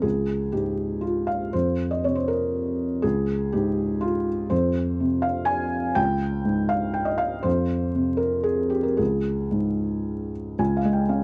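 Close, detailed microphones and a vinyl crackle frame this dry, intimate take on a felt-muted upright piano, whose mellow, softened tone sits up front for the full 11.2 seconds. A wistful, reflective piece of neoclassical minimalism in a rubato 3/4, it circles around Db5 and F5, passes through an F minor chord, and settles on Db at 10.6 seconds. The piano alone spans from Db2 up to Ab5 in this brief passage cut from a longer work.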